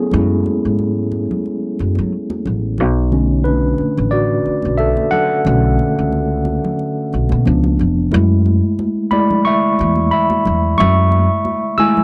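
A clean, warm tine electric piano, heard up front through its built-in speakers, carries the lead across the whole 12-second excerpt of this late-night, introspective neo-soul R&B groove in F# minor, moving from F#m9 through Bm7 to a tense C#7b9 before returning to F#m9 at 8.1 seconds. Beneath it, a woody, dark upright bass with steel strings is plucked pizzicato close to the listener, while high-tuned, ringing congas sit dry in the background. At 90 BPM with a gentle sixteenth-note swing, the dry, close studio sound evokes a 1970s session.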